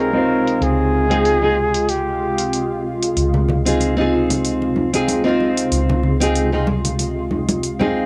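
Relaxed and blissful, this short cut from a longer sunset chillout piece drifts at 94 BPM in 4/4 with a light swing on the sixteenths, resting on a single Dbmaj7 chord in Db lydian. A warm, up-front flugelhorn with vibrato sings a brief, punchy phrase that stops at 2.9 seconds, carried on cassette tape and tape echo. A full-bodied, fingerpicked nylon-string guitar holds the accompaniment throughout, softened by a low-pass filter and tape echo, while a shimmering, ethereal pad with an octave-up sheen, slow attack, chorus and its own reverb sustains the chords beneath. A dark, round hollow-body electric bass anchors the low Db, and a metallic, layered electronic hi-hat ticks through a filtered, tape-worn haze from 0.5 seconds. Ringing, medium-tuned congas played with soft hands join at 3.3 seconds, all set in a short, wet booth ambience with a homemade cassette character.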